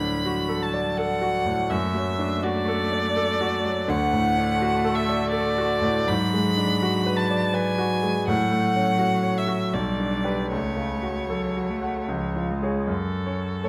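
In a rubato 3/4 at 75-86 BPM, this melancholic, yearning fragment of a slow romantic piano trio movement settles into F# minor as a rich, smoothly vibrato-laden bowed violin carries the melody up front, a focused cello sings a second line beneath it, and a bright, brilliant concert grand with deep bass and long sustain supplies the accompaniment, all captured by close, detailed microphones in a moderate concert hall reverb.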